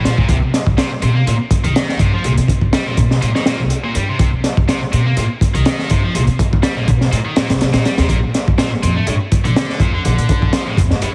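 Opening on a bright, scooped, high-gain guitar riff laced with distortion, 12-bit sampler grit and tape echo, this funky, energetic breakbeat excerpt at 123 BPM in C dorian, swung on the sixteenths, quickly gains a woody pizzicato upright bass and an up-front, gritty drum kit with a punchy kick and high-tuned snare, moving from Cm7 to Bbmaj7 at 8.1 seconds under a heavily compressed, radio-like sheen with vinyl crackle and studio reverb.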